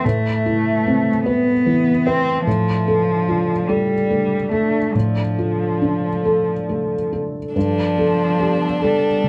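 A felt-muted upright piano, soft and intimate with audible action noise and short sustain, opens this fragile, longing neoclassical passage alongside a rich, smooth bowed cello second line and a dark analog pad whose slow-attack sustained chords sit deep in the background with chorus and phaser. The music moves in a rubato 6/8 at around 45-50 BPM, shifting from Amadd9 to Dm/A at 2.5 seconds. A clear, focused single violin with vibrato enters on the melody at 7.6 seconds as the harmony turns to Gadd9, all within a moderate studio reverb before the cut at 9.3 seconds.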